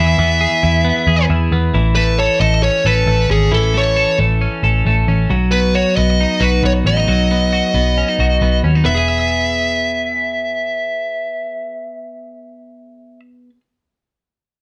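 A fuzz-distorted lead guitar carries the melody up front, its dark, compressed tone sitting high in the mix across this short section cut from a longer piece of jangly indie pop. Beneath it, a twelve-string electric guitar rings out bright, twangy arpeggios with a clean, picked sound. A vintage electric bass, foam-muted and round, anchors the low end with a dark, amped thump and is the loudest of the three. The mood is nostalgic and breezy, with a straight 4/4 feel and chords that move from E to A at 1.7 seconds, on to B, and back to E at 8.9 seconds. Light reverb gives the impression of a band playing live together in one room.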